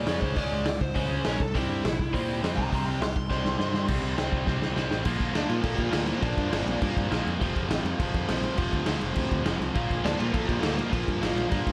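Rebellious and rowdy, this short cut from a longer punk rock track charges along at 204 BPM in a straight 4/4. A biting, overdriven lead guitar opens with a solo over the first 3.9 seconds, carries the melody until 6.8 seconds, then returns briefly from 10.0 to 11.5 seconds, its tone sharpened by overdrive and a digital delay. Underneath, a cranked, double-tracked stack guitar hammers out the riff up front for the whole stretch, while a picked electric bass adds a growly, direct-and-amped low end. The raw garage drum kit enters at 0.1 seconds with a punchy kick, medium-tuned snare, hi-hat and crash, sounding saturated and gritty with a rolled-off top in a bright stone room, and it throws in short fills before each change of section. Light reverb holds the parts together, and the harmony moves from Db5 through C and Bb to F5 before settling back on Bb.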